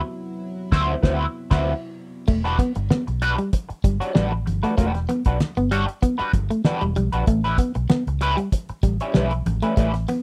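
Sly and hypnotic, this dry, close 1970s-style funk excerpt opens with a shimmering chorused pulse-width pad under a band accent until 2.3 s, when a dark, slightly broken-up guitar riff and soft, low-tuned congas join the twangy wah guitar accompaniment, round foam-muted fingered bass and cloth-damped, thuddy drum kit with its fat snare and tight kick, the chords moving from D13 to Em9 and then to A9 at 7.3 s.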